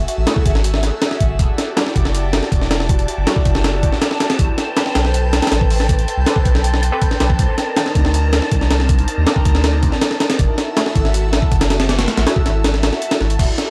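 A dry, gritty recording with vinyl crackle and transformer saturation frames this dark, atmospheric drum and bass excerpt in a jungle vein. Up front, a compressed, pitched-up breakbeat kit with a thumpy kick, high-tuned snare, hi-hat and crash sits over a soft, round dub sub bass, while a breathy pad with chorus and phaser sustains chords moving from F#m9 through Em9, Am9 and Cm9 and back to F#m9. In the background sit a muted, filtered dub chord stab with phaser and dub echo, and a wind-like tuned noise texture that enters at 1.7 seconds, bathed in its own reverb.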